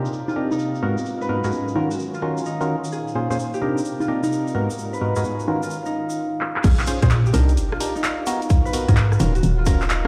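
This skippy, moody cut of two-step UK garage swings at 129 BPM. It opens on a ringing, fingerpicked Celtic harp melody with digital delay, set against up-front organ stabs that are hollow and wave-folded, treated with chorus, phaser and delay, and worked by a filter sweep. A punchy analog drum machine drives it with congas, handclaps, rim clicks, hi-hats and crash, its hats, snare, percussion and cymbals all low-pass filtered, while a grainy egg shaker sits faintly beneath. In the background, a silky string machine sustains mellow chords cycling through Cm9, Abm9, Ebm9 and Bbm9 with sidechain pumping, and a warbling, nostalgic tape-like pad drifts alongside until 6.2 seconds. After a drum fill at 6.4 seconds, the drop lands at 6.6 seconds with a bouncy, knocking FM bass and a tight, layered electronic kick pushed up front. The whole track sounds as if played on a big system in a bare room, wrapped in large studio reverb, vinyl crackle and a dulling low-pass filter.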